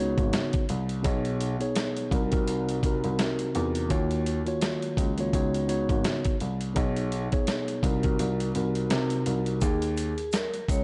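This is a tough, dark boom-bap hip-hop excerpt at 84 BPM in 4/4, with a swung sixteenth-note feel and a dry, gritty hardware sound marked by transformer saturation, vinyl crackle and a dulled top end. A mellow, clean tine electric piano carries the chords up front, moving through Db7sus4, B69, Cm7b5 and Ebm9 until 9.6 seconds, where the harmony shifts to Dbsus2. Beneath it, a dark baby grand piano plays the bass line with tube saturation, its smooth, vintage tone showing audible action noise. The dusty, sampler-style drum kit enters at 0.2 seconds with a thumpy kick, a medium-tuned snare and hi-hat, compressed and re-recorded in a large room, and the kick drops out from 8.2 to 9.6 seconds. At 9.6 seconds a vibraphone with medium hard mallets takes a brief metallic, ringing melody with slow motor vibrato in a boxy small room, while a faint tube shaker joins in the background.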